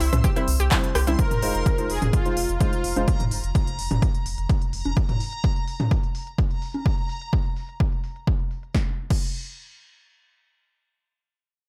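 A straight 4/4 pulse at 127 BPM drives this dreamy, expansive progressive house passage in F minor, anchored by an overdriven electronic kick set up front and a big-room dance drum kit of crisp hats, punchy snare, handclaps, rim click and crash, with a filter sweep on the drums from 1.2 to 8.7 seconds. An analog drum machine adds congas, toms and rim clicks, while a round, deep analog bass, a detuned, warbling pluck playing arpeggios and a mellow chord stab all pump to the sidechain beneath a smooth supersaw melody carrying digital delay, as the harmony moves from C to Fm7. A reversed, granular swelling texture glows high above, lingering in its own reverb over an otherwise dry mix.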